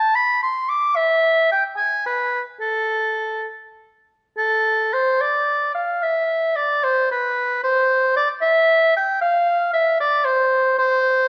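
Dance-like and flowing, this short passage is a baroque-style fantasia for unaccompanied oboe in A minor, cut from a longer piece. It moves in a lilting 6/8 at roughly 67-79 BPM counted in dotted quarters, with a rubato feel that lets the phrasing breathe. The oboe plays alone from start to finish, ranging from A4 up to D6, and its tone is warm yet slightly distant and roomy, though it still sits up front in the sound. A moderate recital hall reverb, lasting about 1.6 s, surrounds the instrument with a natural sense of space. The music unfolds in two parts, the second beginning at 4.4 seconds and continuing until the passage ends at 11.3 seconds, with tuning set just below standard pitch at A4 = 439 Hz.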